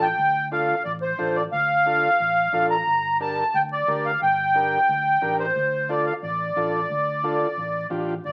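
Fiery and passionate, this short cut from a longer cumbia piece moves at 178 BPM in 4/4 with a straight feel, set in D minor. An up-front accordion carries the melody between C5 and Bb5, its sweet yet dark voice smooth and reedy, shimmering with a light tremolo tuning. Beneath it, an overdriven combo organ supplies accompaniment in a vintage, reedy tone colored by light vibrato, dropping out at 8.1 seconds just before the others finish. A fingered electric bass sits low in the mix, warm and amped, holding the bottom between G1 and D2. The harmony moves from D minor to G minor at 2.9 seconds and back to D minor at 5.6 seconds. The whole is bathed in a wet studio reverb and carries the crackle of a very old 78 rpm record.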